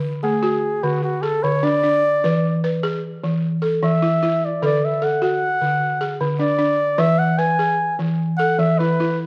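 A buzzing, woody balafon struck with soft rubber mallets opens this hypnotic, flowing West African piece, its arpeggios sounding up front with a dry, band-limited vintage tone. At 0.2 seconds a dark, veiled trumpet in a bucket mute enters with a jazz-style solo melody, close-miked and up front, carrying a light vibrato. The music moves at 100 BPM in a straight 12/8 in D lydian, alternating between D and E chords within a wet recital-hall reverb, and it is cut from a longer piece.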